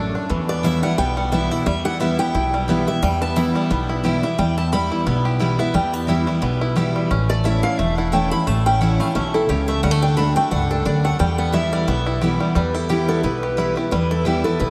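Bluegrass at a driving 176 BPM with a light swing in E dorian, this lonesome excerpt from a longer piece moves through Em, A and D. A bright, picked steel-string guitar carries a solo melody from 0.0 to 12.6 seconds, touched with subtle chorus and delay, over a full-bodied dreadnought guitar accompaniment placed up front. A twangy banjo played with fingerpicks adds percussive arpeggios, and a woody, thumpy pizzicato upright bass anchors the bottom, all soaked in a huge ambient reverb that gives the mix a dreamy haze.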